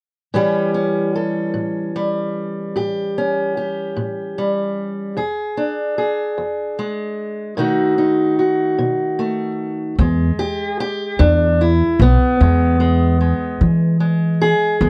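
Laid-back and soulful, this dry, close, 1970s-style acoustic country blues excerpt moves at a slow 50 BPM in 12/8, with a dark, boxy fingerpicked parlour steel-string guitar up front carrying the melody over A7, E7 and B7 before taking a solo at 10.0 seconds, when a woody pizzicato upright bass enters beneath it on an E chord.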